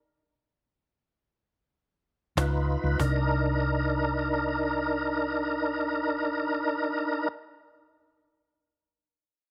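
This short excerpt of straight-eighth soul blues in C minor moves in free time, with a smoky, soulful mood and a sense of slowing down over its first 3.0 seconds. After a stop, the band enters at 2.4 seconds on a Db7 chord before settling onto Cm7 at 3.0 seconds. A tonewheel organ carries the accompaniment up front, its lightly overdriven tone full and marked by key click, chorus vibrato and a slow rotary speaker. Beneath it, a hollow-body short-scale fingered electric bass gives a dark, round and punchy amped low end. A snappy cajon with snares sounds close and dry, up front, but plays only briefly before dropping out at 3.1 seconds. Light studio reverb surrounds the recording, while organ and bass sustain the Cm7 harmony together.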